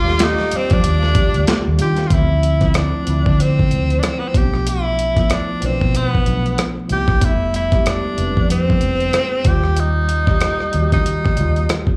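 Heard through a club PA with little reverb, this smooth, late-night neo-soul R&B passage pairs a bright, vibrato-laden tenor saxophone melody with slapback echo over a worn, slightly out-of-tune tine electric piano with light overdrive, a round, foam-muted vintage electric bass, and a gritty, compressed sampler-style drum kit with a thumpy kick, while a very quiet, woody string section holds lush bowed chords only until 2.1 seconds.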